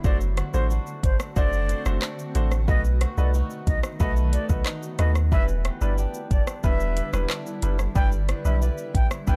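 Tough and bouncy, this dancehall groove rides on an up-front electronic afro-pop kit of deep kick, metallic hi-hats, handclaps, rim clicks and shaker, alongside a punchy sine sub bass with a pitch-drop attack. Over it, a reedy, airy concert flute carries the tongued melody through tape echo, while a clear, present baby grand piano and a dark, boxy fingerpicked acoustic guitar in swing style fill out the harmony with accompaniment and arpeggios. Behind them sits a blurred, evolving granular cloud pad with its own reverb and sidechain pumping, all captured in a dry, gritty hardware recording cut from a longer piece.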